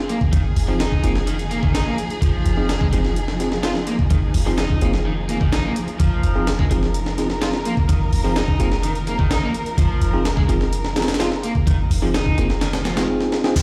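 Gritty and energetic, this breakbeat excerpt rides on a compressed, pitched-up sampler-style drum kit with a thumpy kick and high-tuned snare, sitting up front beside a deep, boomy 808-style bass holding a low F. A crunchy, double-tracked overdriven guitar riff with digital delay and bell-like electric piano stabs through a low-pass filter sit over dark bowed strings whose sustained Fm7 chords pump against the sidechain, all set in a big, bare-room space with vinyl crackle. A drum fill from 13.2 seconds leads into an electronic downlifter at 13.6 seconds.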